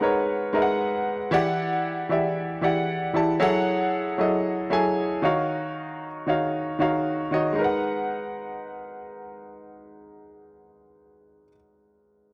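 Soulful and late-night, this short amapiano fragment in a straight four rests entirely on a concert grand piano playing accompaniment, its worn tone, deep bass and short sustain sitting up front. The piano moves through G#m7, Em7, F#m7 and D#m7 chords before returning to G#m7 at 7.6 seconds as a new section begins. Light reverb barely softens the dry, gritty recording, which ends at 12.3 seconds.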